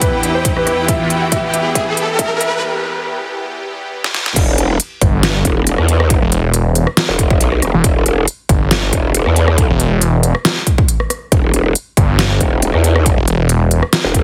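Heavy wobble dubstep in E minor at 138 BPM with a half-time feel, this aggressive excerpt opens with a soft, felt-muted upright piano melody, a lush phased supersaw pad and a smooth bowed string section over an electronic riser, a punchy electronic kick and a dubstep kit with deep snare and crisp hats, before the drop at 4.4 seconds brings in an up-front, wobbling growl bass with chorus and, from 5.0 seconds, a snarling distorted saw bass, in a heavily compressed, dry, radio-like mix.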